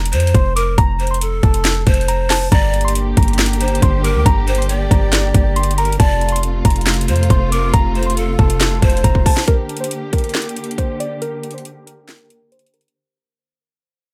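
Muted, felt-like synth keys carry the melody over a punchy, heavy 808-style bass and an up-front trap kit with a hard-clipped kick, sharp snare, metallic hats and handclaps, setting a melancholic, menacing half-time trap groove at 138 BPM in G minor. Breathy, reedy pan pipes add a close-miked second line with analog delay, and a lush, woody string section with vibrato enters at 2.5 seconds on sustained chords moving between F and G minor. During a drum fill at 9 seconds, the bass and pipes drop out, and from 9.5 seconds a filter sweep and fade-out close this dry, gritty hip hop excerpt, with a break at 11.2 seconds.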